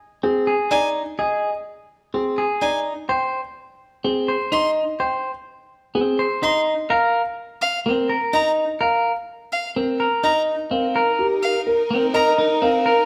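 A straight 4/4 pulse at 126 BPM drives this hypnotic, meditative stretch of minimalist pattern music in C minor, cut from a longer piece, with harmonies moving from Cmadd9 to a rootless Ab and then Eb5. A dark, mellow grand piano carries the melody with audible action noise and long sustain, while a bright, twangy clean electric guitar and a close, smoothly bowed solo violin with vibrato spin arpeggios up front in a recital hall's moderate reverb. At 10.7 s, an airy, tongued alto flute adds a second line and a distant, focused studio violin section holds sustained chords until the close at about 13.1 s.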